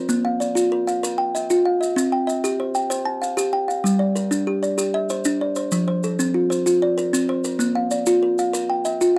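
Southern African traditional music in a hypnotic, mbira-style interlocking cycle, moving at 128 BPM in a straight 12/8, cut from a longer piece. A woody, thumbnail-plucked kalimba sits up front playing bright, short arpeggios from F3 to A5 through a loop of Bb, Cm, Gm and F, while grainy, mellow maracas join at 0.1 seconds further back. The sound is dry and close, like a 1970s studio recording.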